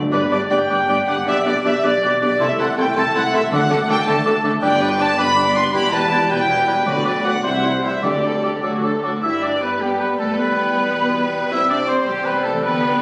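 In a rubato 6/8, this spirited and cheerful classical-period orchestral movement, cut from a longer piece, carries its melody on a smooth violin section, while a second violin line, a bright oboe, a faint clarinet and an airy, hollow flute play second lines over expressive violas with portamento, a present bassoon, very quiet mellow French horn chords, a lush cello section and distant double basses; an up-front trumpet section adds stabs until 8.6 s, and dry, hard-mallet timpani sound briefly at the very start and again from 3.5 to 8.6 s, the whole captured on a phone in the room with wet reverb and compression.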